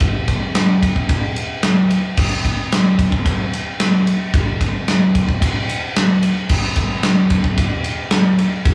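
A straight 4/4 rock pulse at 111 BPM drives this short cut from a longer piece, setting a heavy, menacing mood. A big acoustic rock drum kit carries the whole 8.7-second passage, sitting up front in the mix with kick, snare, ride and crash cymbal. Its sound is warm and mid-forward, with a tight kick, a medium-tuned snare and a rolled-off top that keeps the cymbals from turning bright. The kit has the weight of a big room, while light reverb and small room ambience give the feel of a band playing live together in one space. The effect is a dark, heavy groove.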